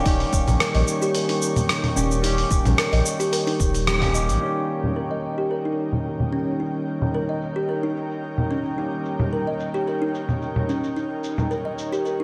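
Organic downtempo at 110 BPM with a light swing, warm and earthy, where a woody kalimba plays filtered arpeggios over a barky, lightly overdriven tine electric piano and an airy, breathy pad on an Eb7 chord, while a gritty, dusty sampler-style kit of cabasa, congas, hi-hat and rim click sits up front, a round sine sub bass and an overdriven electronic kick drop out after a band accent at 3.9 seconds, and a filter sweep on the drums runs from 4.4 seconds to the end of this cut in a lush hall reverb with a bright 1980s-style digital sheen.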